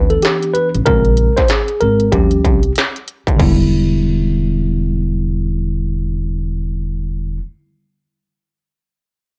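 A dark, smoky mix with moderate studio reverb carries this mellow jazz-hop excerpt at 95 BPM in E minor with a swung 16th-note feel, as a worn, slightly out-of-tune tine electric piano solos over chords from Cmaj9 to Em7, a woody, growly pizzicato upright bass sits up front beneath it, and an electronic industrial drum kit with a distorted kick, clanging snare and smooth hi-hats plays until 3.6 seconds.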